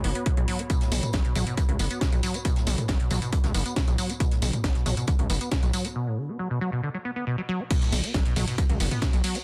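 Dark, industrial peak-time techno cut from a longer piece, driven by a gritty, saturated synth bass sitting up front and a squelchy, resonant acid saw riff with dub echo, both pumping against a punchy electronic kick that enters at 0.3 seconds. A layered electronic kit adds a cracking snare, metallic hats, toms, tambourine and cymbals, while a very quiet, distant brushed jazz kit on hi-hat and snare joins at 0.7 seconds beneath a warbling, nostalgic lo-fi pad with chorus and reverb in the background. After a break from 6.0 seconds, the drop lands at 7.7 seconds in a dense, heavily limited modern master.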